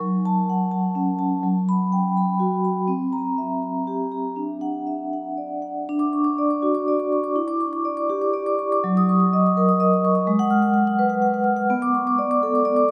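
A solo vibraphone played with soft mallets opens this flowing, reflective contemporary classical passage in 6/8, its ringing, mellow tone shaded by a medium motor vibrato. Close and up front yet set in a long, wet cathedral reverb, it moves through rich chords such as Gmaj7/F#, C7 and Dadd9 before a second section begins at 5.9 seconds and drifts through Em7, F#6 and G#m7 to settle on Bm9. The music is cut from a longer piece.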